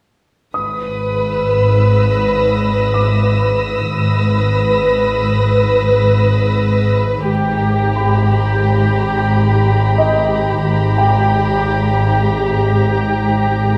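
This cinematic suspense score cue, taken from a longer piece, sits in a tense, eerie mood over an unsettled 5/4 metre and a single minor chord held throughout. A muted symphonic violin section carries the melody up front, its lush, vibrato-laden tone kept dark by the mutes within a narrow range. Beneath it, con sordino cellos and a studio double bass section each stay on one low note with soft attacks and light vibrato, the basses adding a rounded warmth. High above, a quieter chamber violin section adds a veiled, smooth-topped shimmer, while a polished grand piano, entering at 0.5 seconds just before the strings, places present, short-sustained notes in its upper register. The ensemble is heard in a reverberant recital hall or church with a 1.6-second decay, lending the whole passage a haunting sense of space until the strings and piano end at about 13.8 seconds.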